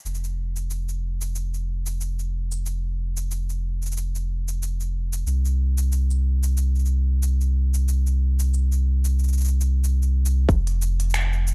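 A deep, round sub bass with a sine-like tone sits up front from the very start, its fast attack giving way to mellow, sustained notes between F1 and C2. This short folktronica excerpt moves at 92 BPM in 4/4 with a gentle swing on the sixteenths, and its mood is wistful and autumnal. An organic electronic drum kit of finger snaps, crisp hi-hat and shaker sits further back, carrying the air of a large room. Near the end, at 10.5 s, a tight, overdriven electronic kick lands briefly, sounding up front and carrying the air of a small room as the piece shifts into a new section. The production is dark and dry, with little reverb, and the tuning sits slightly below standard pitch.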